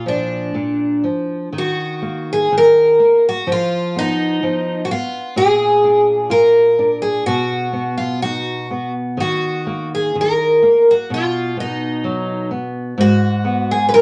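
A fado-style ballad in a free, rubato 2/4, this short excerpt from a longer piece carries a passionate, longing mood. A picked twelve-string acoustic guitar sings the melody up front, its bright, shimmering, octave-doubled tone full-bodied with a dreadnought's depth, and a touch of finger squeak slipping through. Beneath it, a fingerpicked nylon-string guitar supplies warm, classical accompaniment, set well back in the balance. Both guitars play throughout the 14 seconds, moving through a minor-tinged progression that passes from Bb and Eb5 to Bb7, B and finally Abm. A moderate club reverb gives the pair an intimate sense of space.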